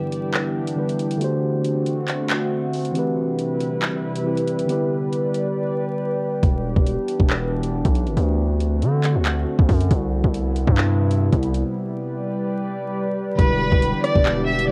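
A distorted, heavy 808-style bass dominates this cold, tense drill excerpt, arriving at 6.4 seconds with a saturated, aggressive bite that sits up front against a half-time groove. Before it, a mellow tine electric piano plays clean accompaniment from the opening until 6.5 seconds, with cassette-tape colouring, over a warbling, nostalgic pad whose detuned sustained chords carry chorus and built-in reverb throughout. A drill drum kit with a knocking kick, metallic hi-hats, handclaps and rim clicks drives the piece, briefly dropping out just before the bass enters. At 13.4 seconds a rich chamber violin section takes the melody with a reedy, gut-string tone, smooth on top and treated with tape echo, as the electric piano returns beneath it. The whole mix has a lo-fi, home-recorded cassette feel with vinyl crackle and light reverb, and the chords move through Em7, D7, Cmaj7 and G.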